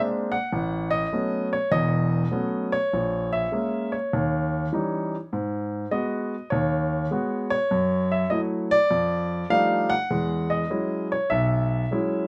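A warm grand piano sits up front in a light reverb, its notes ringing with long sustain across a range that reaches from deep in the bass up into the upper middle register. This short passage of solo jazz, cut from a longer piece, moves at a relaxed swing in four, with a sophisticated air. Rich extended chords drift through the harmony before settling on a final E69 chord at 10.1 seconds.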